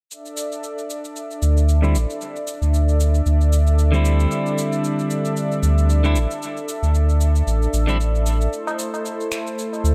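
A deep, round sine sub bass sits up front in this earthy, hypnotic organic downtempo excerpt, arriving at 1.4 seconds with a filter sweep beneath a smooth, detuned sawtooth pad whose bright sustained chords carry chorus and tremolo throughout. A clean, picked electric guitar, compressed and gritty with 12-bit sampler character, low-pass filtering, a filter sweep and dub echo, plays accompaniment from 1.8 to 8.0 seconds, while electronic cabasa and finger snaps keep a lightly swung pulse in a small room. Near the close, a ringing, high-tuned tabla with a vintage, band-limited tone adds a brief acoustic touch to the dry, echo-heavy mix.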